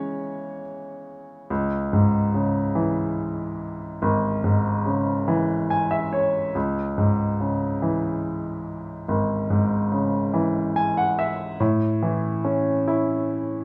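A clear, polished baby grand piano opens this dramatic, aching pop excerpt on its own, sitting present and up front in a wet studio ambience that suggests a live room. The piano spans a broad range in C# minor at a slow 48 BPM in 6/8, tuned slightly flat to A4 = 437 Hz, and it adds fills from 5.3 and 10.3 seconds. The harmony rests on C# minor before moving to A at 11.6 seconds.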